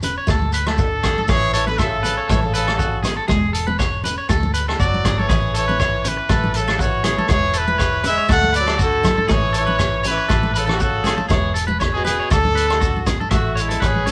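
A bright, vibrato-laden trumpet carries the melody up front from 0.8 s in this joyful, danceable highlife guitar band excerpt at 120 BPM in A major, with a clear, distant tenor saxophone entering alongside it on a second line. Beneath them, a slightly broken-up, twangy electric guitar with a warbly pitch drift plays arpeggios, while a picked steel-string acoustic guitar with audible finger squeak quietly picks its accompaniment in the background over a cycle of D, A and E chords. A round, foam-muted vintage bass and a punchy vintage kit of hi-hat, kick and rim click drive the lightly swung groove, joined by damped, hard-handed congas and a grainy shekere, all sharing a moderate stone-room reverb.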